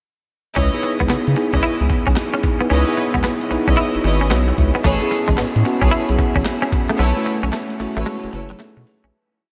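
Soaked in a huge, dreamy ambient reverb, this short, confident new jack swing piece in C# minor struts at 112 BPM with a hard 16th-note swing. A gritty, compressed sampler-style breakbeat kit with a thumpy kick and clap-layered snare drives a deep, round analog bass playing a bouncy synth-funk line with muted ghost notes, while a mellow tine electric piano adds syncopated rootless chord stabs and short fills through subtle chorus. A bright, twangy direct guitar picks a muted single-note riff with ensemble chorus, and a reedy gut-string studio section punches short syncopated stabs with tape echo over C#m9 and Amaj9 before a B9sus4 break and fade-out from 7.0 seconds.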